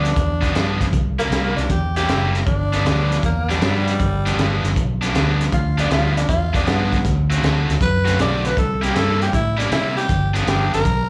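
A swung shuffle at 157 BPM in 4/4 drives this gritty, swaggering electric blues in G mixolydian, cut from a longer piece. The breakbeat kit is crunchy and saturated, with a high-tuned snare, a tight kick and hi-hat under a rolled-off top. The vintage fingered bass sits up front, dark, round and foam-muted. A cranked stack guitar plays an overdriven, picked riff with a bright edge and slapback echo until 10.8 seconds. Over them the tenor saxophone solos across the whole passage, raspy and growling in a jazz style yet clear in tone, also carrying slapback echo. The changes move G7, C7, G7, D7, C7 and back to G7, heard as a live club gig through the venue's PA with light reverb.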